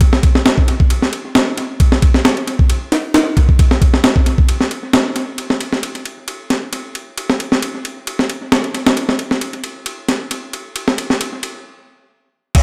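A swung breakbeat groove at 134 BPM in 4/4 struts with a swaggering, funky feel, carried by a gritty, compressed sampler-style drum kit whose thumpy kick, high-tuned snare, ride and crash cymbals sit up front, trailed by analog delay. A moderate echo chamber reverb lends the echo-heavy mix a digital ambience, and after the groove shifts into a new section at 5.4 seconds, the beat stops dead from 11.7 to 12.5 seconds in this fragment cut from a longer piece.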